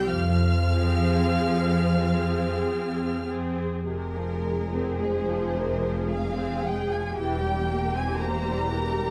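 A solemn, elegiac classical excerpt for string orchestra in F minor, this slow romantic movement in 3/4 drifts with rubato at around 46-60 BPM, tuned to A4 = 435 Hz. Focused, bowed first violins carry the melody with a smooth top and vibrato over a rich second violin line, while evenly toned violas sit up front, expressive cellos rest in the background and soft-attack double basses, also up front, join at 0.1 s. The lush ensemble rests on F minor, shifts into a new passage at 3.9 s and moves to C7/E at 7.2 s, all within a moderate scoring-stage reverb.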